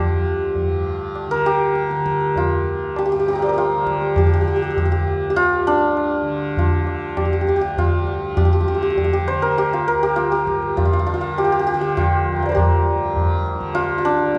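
The rhythm moves in a straight seven-beat cycle at 100 BPM, with a low-tuned tabla entering at 0.6 seconds and sitting close in the sound. This excerpt of Hindustani classical music is set in raga Malkauns on D, tuned slightly sharp to A4 = 441 Hz, and its mood is solemn and introspective. Up front, the hammered santur carries the melody between D4 and D6, its tone shimmering and ringing. Beneath it, a softly plucked tanpura holds a buzzing drone between D2 and D3 from the very start, lower in level than the other parts. The whole performance sits in the wet reverb of a recital hall, with a decay of about 1.5 seconds that gives the instruments a spacious, reverent air.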